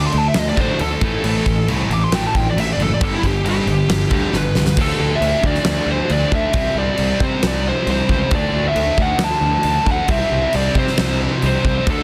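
A biting, overdriven lead guitar solo opens this heavy, aggressive hard rock cut at 136 BPM, ranging from E4 to D6 through analog delay over a scooped, high-gain rhythm riff, a dark fuzz-driven picked bass and a very quiet, dark semi-hollow guitar that drops out at 4.8 seconds. A huge arena drum kit, up front with a fat snare, punchy kick and bright crash cymbals, enters at 0.1 seconds and caps the solo with a fill just before the second section begins at 4.8 seconds. The harmony moves through D5, A5, G, C5 and C beneath a dense, heavily limited modern master with light reverb.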